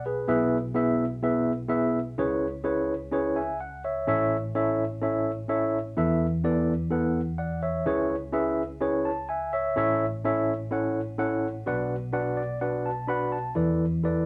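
Set in a club's wet reverb, this driving, urgent soul excerpt at 127 BPM features a lone tine electric piano, mellow and clean through its built-in speakers and placed up front, moving through chords from E/B and C#m7 to Bm and E7sus4, with fills at 8.8 and 12.1 seconds.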